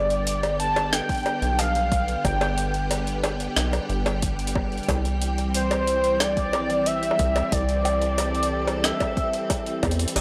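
Melancholic and intricate, this IDM fragment moves at 91 BPM in a straight 4/4 over a G to C change, with a velvety sawtooth synth lead carrying the melody through chorus, vintage 12-bit sampler grit and analog delay, above silky string-machine chords and a rubbery, resonant acid bass with a dark filter pluck. An up-front jungle sampler-style kit of bongos, crash, hi-hat and rim click sounds pitched up, compressed and overdriven, joined at 1.1 s by a deep, tape-toned electronic kick. A very quiet flickering granular texture sits in the background, and a drum fill arrives at 9.8 s, all within a dry, gritty hardware sound with transformer saturation.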